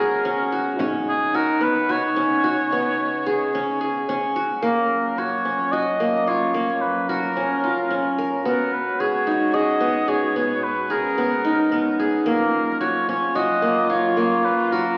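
Set in an uneven 7/4 with a straight feel, this contemporary chamber piece moves with a restless, hypnotic pull and is cut from a longer work. A plectrum-plucked qanun sits up front with bright-edged arpeggios from its triple strings, while a clear oboe carries the melody with soft attacks and classical vibrato. Beneath them a close-miked, warm French horn sings a second line, and a bowed chamber string ensemble holds sustained chords in the background with a reedy, gut-string period tone. A small frame drum struck with hard hands appears briefly from 0.8 to 3.7 seconds and returns for a moment at 12.3 seconds. The harmony drifts from G#m11 and C#9sus4 through F#maj7 and G#madd9, and the whole sound is steeped in recital-hall reverb and the crackle of a very old 78 rpm record.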